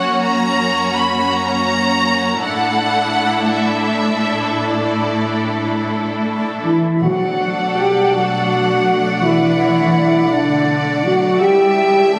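A sorrowful, bittersweet cinematic passage in B minor opens with the full string body at once: a lush violin section carries the melody with focused vibrato, a second violin line moves smoothly beneath it, violas fill in the accompaniment with a velvety glow, and dark cellos hold the bass. The pulse is slow, about 54 beats per minute counted in dotted quarters in 6/8, and the rubato leaves the beats uneven and breathing. At 6.6 seconds a dark clarinet adds a line in the background and an airy, hollow flute adds another, while a mellow French horn section enters prominently with tight sustained chords. From 7.0 seconds a double bass section deepens the low end, and timpani with medium mallets sound briefly in the distance. The harmony drifts from F# through Asus4 into Bm7, closing on a tense C#dim chord. Everything sits in a reverberant recital-hall space, heard as if captured on a phone in the room, which gives the sound a distant, ambient cast as this fragment of a longer piece plays out.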